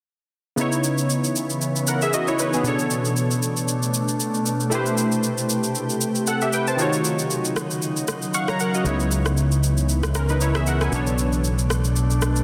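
A lush, heavily limited hall sound frames this soulful, deep amapiano fragment at 116 BPM with a 16th-note swing, where round, detuned analog keys with chorus carry the C#m7 to Bm7 to Am7 to D#m7 changes over an ethereal, glassy FM pad and a layered electronic shaker and rim click, a short synth keys fill arrives at 8.1 seconds, and a punchy, up-front fingered electric bass enters at 8.9 seconds.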